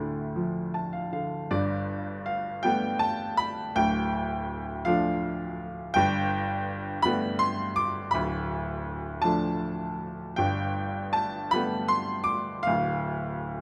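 Dark and wistful, this lyrical classical solo piano passage, cut from a longer piece, unfolds in a rubato 6/8 with uneven beats as a bright, worn baby grand sits up front in light reverb, its brilliant, short-sustained tone ranging from D1 to D6 through a brief fill from 0.4 to 1.5 seconds before settling into a slow alternation of Dm and Gadd9 chords until 13.6 seconds.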